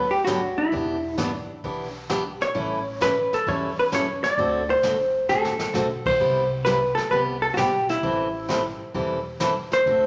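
Country western swing at 131 BPM with a down-home, swinging 4/4 feel, cut from a longer piece, where a dark, clean, compressed hollow-body jazz guitar carries the melody up front over a bright, full-bodied picked steel-string acoustic guitar, a woody, thumpy pizzicato upright bass and a brushed jazz kit with dark cymbals and a boomy kick that enters at 0.3 seconds and plays a fill at 5.3 seconds, moving through Gmaj7, Em7, A7, D7, Cmaj7 and Am7 in a large studio reverb.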